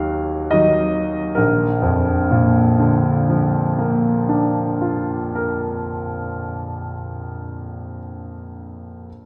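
Freely rubato in a slow 4/4 pulse of 31-45 BPM, this brief fragment of a longer romantic nocturne for solo piano opens by slowing down over its first 1.4 seconds. The mood is dreamy and serene, set in B-flat major. An E-flat minor chord gives way to B-flat at 1.4 seconds, where a new section begins. The concert grand piano, playing alone from the start until 9.1 seconds, spans Bb1 to F5 with a clear, open tone and a deep bass. It sits up front, while a generous concert hall reverb with a 1.9-second decay places the listener further back in the room.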